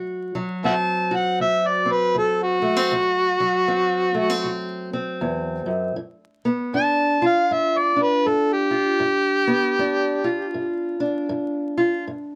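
Acoustic country blues in a soulful, swaggering mood, this short cut from a longer piece rolls along with a light swing feel in four. A fingerpicked steel-string parlour guitar sits up front from the opening second, its dark, boxy tone laying down the accompaniment in the low and middle register. At 0.7 seconds an amplified, overdriven harmonica takes the lead with a gritty, jazz-inflected solo, full of vibrato, scooped notes, tongue slaps and a soft attack, riding a touch louder than the guitar until it drops out at 10.8 seconds. The harmony moves from D7 to G7 at 6.0 seconds. Close, detailed microphones, light reverb and a layer of vinyl crackle give the sound an intimate, old-record character.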